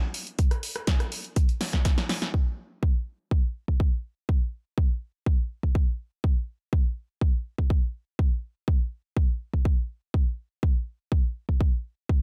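This feel-good, funky house fragment opens at 0.1 seconds with an analog drum machine playing hi-hat, rim click and punchy snare, its hats and snare softened by a low-pass filter and given a small-room character. An electronic kick drum joins at 0.4 seconds, layered, produced and sitting up front in the mix. The tempo is a straight 123 BPM in 4/4. A short drum fill runs from 1.6 seconds and ends at 2.3 seconds, where the drum machine stops and the kick carries on alone. The sound is dry, with little reverb.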